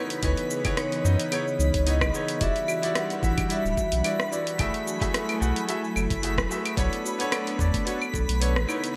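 Swung sixteenths in 4/4 give this sunset chillout clip its relaxed sway, with a knocking, tape-warm electronic kick and a smooth R&B kit of claves, hi-hat, rim click and shaker sitting under gated reverb. A deep, round sine sub bass sits up front, while a bright grand piano with audible action noise and long sustain plays echoing accompaniment through the chords C#m9, Em9, F#m9 and Bm9. A metallic, ringing vibraphone with medium hard mallets and fast motor vibrato carries the delayed melody, falling silent at 4.3 seconds and returning at 8.4 seconds. An airy, breathy pad with detuned chorus holds mellow sustained chords, and a buzzing, woody kalimba adds boxy delayed arpeggios. In the background, a twinkling granular texture with octave-up shimmer floats on its own reverb. A lush hall ambience and bright 1980s-style digital production frame this warm, wistful passage.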